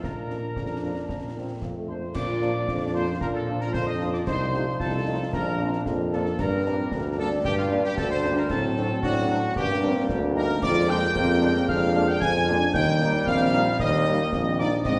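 A proud, rousing military-style march for wind band at 113 BPM in 2/4, moving from Bb major to Eb major at 10.6 s, with a distant, roomy trumpet section carrying the melody over a punchy, up-front tuba bass, while a crisp, pure piccolo and a smooth-topped euphonium (entering at 2.1 s) play second lines, a very quiet French horn section accompanies, soft-attack trombones sustain chords in the background, and concert snare, bass drum and dark clash cymbals sit back in a wet concert-hall acoustic with a faint mains hum beneath.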